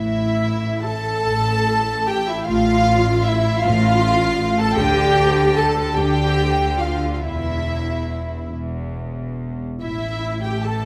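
Classical, a slow romantic movement for string orchestra in 6/8 with rubato, solemn and yearning in mood, cut from a longer piece. Up front, a violin section carries the pure, floating melody, bowed sul tasto with a soft attack, while an intimate chamber violin section adds a smooth second line with vibrato in the background and a dark, woody viola section fills in lush accompaniment. Beneath them, a warm studio cello section and a distant yet forward double bass section with vibrato share the bass, and a moderate scoring-stage reverb gives the ensemble a spacious bloom.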